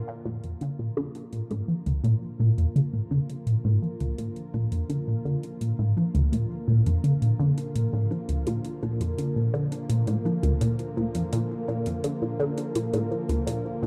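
A vintage, warbling sawtooth pad fades in on a Bb chord, its sustained chords lightly chorused, setting an expansive, cosmic mood for this ambient, sequencer-driven space music in Bb major at 84 BPM. From 0.3 seconds a juicy, squelchy blip pluck sits up front with a low riff, its resonant filter sweeping under phaser and delay. Faint, tape-hued electronic bongos and metallic hi-hats fade in alongside, and a moderate concert hall reverb lends the whole passage depth.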